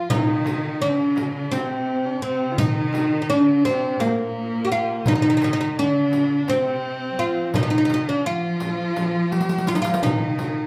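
In a straight 7/8 at 169 BPM, counted in eighths, this melancholic, soulful Turkish makam ensemble piece in F makam huseyni, tuned to A4 = 436 Hz, is carried by a bright, woody, plectrum-plucked fretless oud sitting up front. A clear kamancheh with light vibrato and smooth portamento and a lush, rich symphonic cello section add second lines alongside it. Underneath, a very quiet clay-shell darbuka, a small, distant frame drum and the jingling riq keep time, with a drum fill from 9.3 to 10.0 seconds, all heard together live in one room with a wet large-studio reverb, in an excerpt cut from a longer piece.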